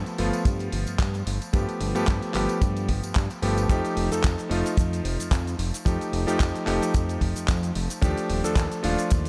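Groovy and sunny, this nu-disco excerpt swings lightly in 4/4 as a bright, clangy vintage electric grand piano with sidechain pumping, a low-pass filter and digital delay plays G9, F9 and Ebmaj9#11 chords over a fat, detuned sawtooth analog bass that also pumps, while a tight, dry kick sits up front from 0.5 seconds and a gritty, compressed sampler-style kit of handclaps, hi-hat and shaker pairs with a tambourine in the background, inside a dark, warm production with a small room reverb.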